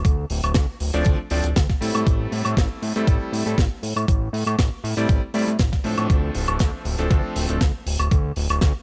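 Cosmic and sensual, this nu-disco excerpt rides a straight 4/4 groove over Dm7 and Am7 chords, anchored by a thumpy, overdriven electronic kick and a fat, nasal, detuned analog bass sitting up front. A tight, dry funk kit adds hi-hat, medium-tuned snare and woodblock, while a bright, clangy electric grand piano enters at 0.9 seconds with sidechain pumping and analog delay, dropping out at 7.6 seconds. The parts sit in a small room reverb, and the cut is taken from a longer piece.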